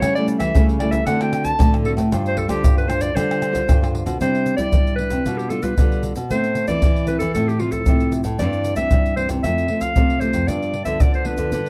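Playful and sunny, this samba and choro excerpt sets a bright, scooping clarinet with jazzy vibrato out front, punchy yet roomy, over two warm, fingerpicked nylon-string guitars, one deep and classical with audible finger squeaks and the other small and fresh-stringed, which between them carry the chords and hold down the bass. A close, dry percussion section of tube shaker, pandeiro, tamborim and deep surdo sits up front with hard hand strikes. A short opening of dominant chords gives way at 4.2 seconds to a longer passage moving from Cadd9 through Amadd9 and Fmaj7/A to G7, all under light reverb and a dark production.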